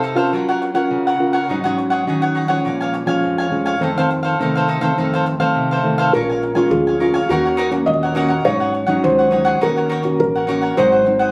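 Yearning and nostalgic, this short samba fragment opens with cavaquinho and nylon-string guitar sharing the accompaniment, both sitting up front. The cavaquinho is picked and crisp, while the guitar is thumb-plucked, full-bodied and classical in tone. At 6.1 seconds a felt-muted upright piano enters with a second line, soft and boxy, its thick felt and audible action noise lending an intimate, mellow character. An upright bass arrives at the same moment, played pizzicato on gut strings with a woody, thumpy sound, set low in the mix. The harmony moves through chords such as Gbmaj7, Bbm7 and Ebm7 before the excerpt ends on Ab7. Captured on a phone in the room, the recording carries a light club reverb and compression.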